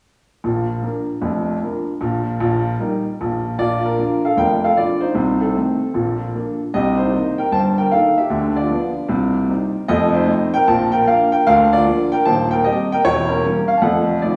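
A brisk 152 BPM swing in 4/4, with eighth notes lilting at a 66% swing, drives this playful, exuberant stride piano piece in B-flat major, cut from a longer performance. A lone baby grand carries everything from 0.4 to 14.4 s, reaching from a deep Eb1 up to A5, its tone warm and a little boxy, placed up front in the mix. A short opening statement gives way at 3.6 s to a longer passage that moves through diminished passing chords, C minor colors and F7 turnarounds before closing on a tense F7b9. The instrument sits in a wet recital-hall ambience with a 1.4-second decay, lending a sense of a church or concert space, and it is tuned slightly low at A4 = 438 Hz.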